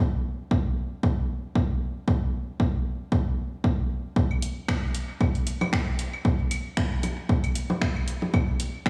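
A swung 16th-note groove at 115 BPM in 4/4 drives this meditative, nocturnal techno piece, cut from a longer track, as a punchy, up-front analog kick plays alone from 0.5 s, joined at 4.3 s by layered, tape-warm claves and congas with sidechain pumping and dub echo, then at 4.4 s by an analog drum machine's finger snaps and hi-hat, also carrying dub echo, with the mix sounding as if played through a big sound system in a bare room with large studio reverb.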